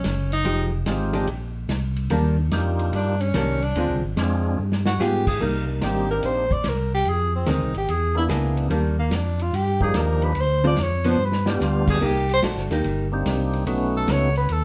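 A swung 4/4 groove at 145 BPM drives this swinging, soulful soul jazz organ trio excerpt. A roomy acoustic drum kit with a tight kick and rolled-off top plays fills at 4.6 and 11.2 seconds, beneath a tonewheel organ bass line that is lightly overdriven, with chorus vibrato and a slow rotary speaker. A breathy, mellow tenor saxophone solos up front with light vibrato throughout, while a clean, percussive second tonewheel organ with key click and slow rotary adds melodic lines from 0.9 seconds, a dark, compressed hollow-body archtop guitar comps through chords such as Fm9, Ebmaj7 and G7b9, and a wet studio reverb sets the sound further back in the room.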